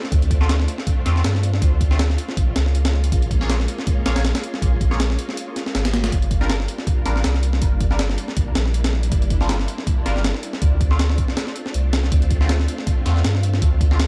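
A dark, dry production frames this frenetic, raw cut of drum and bass and jungle at 160 BPM in G dorian, driven by a gritty, compressed breakbeat kit up front with a thumpy kick, high-tuned snare and hi-hat in studio reverb. A deep, round dub sub bass with tube saturation sits equally forward, while a silky vintage string machine holds soft sustained chords through ensemble chorus, moving from Dm7 through Bbm7 and Gm7. A nasal, band-passed chord stab flickers in at 0.4 seconds with phaser and dub echo, and a brief break arrives at 5.4 seconds.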